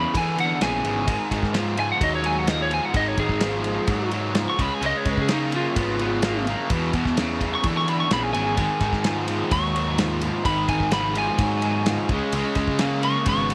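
Classic rock with a swaggering, driving mood at 128 BPM in G# minor, this excerpt features a lightly driven lead guitar taking a compressed, slightly broken-up solo over a cranked, double-tracked stack guitar riff up front and a fuzzy, overdriven picked electric bass. A damped 70s drum kit with a tight kick, medium-tuned snare and ride cymbal sounds dry and rolled-off on top, while a second crunchy, double-tracked guitar with tremolo joins in the background at 8.6 seconds. The chords move through E, G#5, C# and E5, all set in light reverb and small room ambience.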